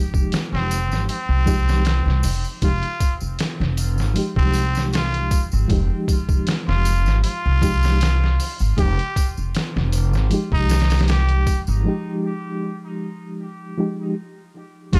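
Brooding and hypnotic, this trip hop excerpt at 78 BPM in F minor rests on a single Fm9 chord, with a muffled, pitched-down sampler-style drum kit and a woody pizzicato upright bass up front, a reedy electric piano treated with tremolo, low-pass filter and tape echo, a background tambourine that stops at 11.8 seconds before a break at 11.9 seconds, and a nasal, breathy straight-muted trumpet solo with light vibrato and dub echo entering at 0.5 seconds, all in a dark studio reverb.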